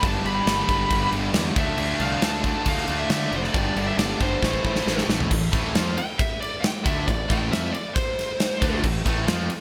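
Driving and menacing, this short hard rock excerpt in straight 4/4 is cut from a longer piece and built on a chord movement from G through Dm back to G and onto Am. A huge arena drum kit sits up front with a punchy kick, medium-tuned snare, bright cymbals and a pumping, hall-like gated reverb, rolling through crash, ride and toms and landing a fill between 4.4 and 5.3 seconds. Underneath, a fuzz-laden fingered electric bass adds a punchy, overdriven low end, while three picked rhythm guitars stack the riff: a very quiet cranked stack guitar with a bright edge, a dark, sludgy overdriven one in the background, and a tight, double-tracked distorted one, also in the background. A dark, high-gain lead guitar carries the melody from the start, stopping at 8.8 seconds, and the passage turns into a lead solo from 5.3 seconds. The whole thing has a bright 1980s-style digital sheen, with moderate plate reverb and a small room ambience.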